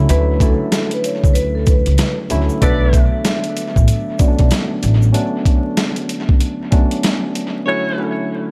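Boom-bap hip-hop at 95 BPM in B minor, this tough, reflective excerpt cut from a longer piece swings over Dmaj7 and Bm7 chords, with a gritty, compressed sampler-style drum kit (thumpy kick, medium-tuned snare and hi-hat) sitting up front beside a woody pizzicato upright bass and a grainy tube shaker tucked in the background. A worn, slightly out-of-tune tine electric piano with a cassette-tape tone carries the accompaniment, a mellow soft-mallet vibraphone with slow motor vibrato sings the melody, and a bright saxophone section punches in with stabs at 2.6 and 7.7 seconds; the piano, vibraphone and saxophones are all filtered and trail off in dub echo. The mix is echo-heavy with studio reverb and vinyl crackle, and a break arrives at 5.1 seconds, when the bass and shaker drop out.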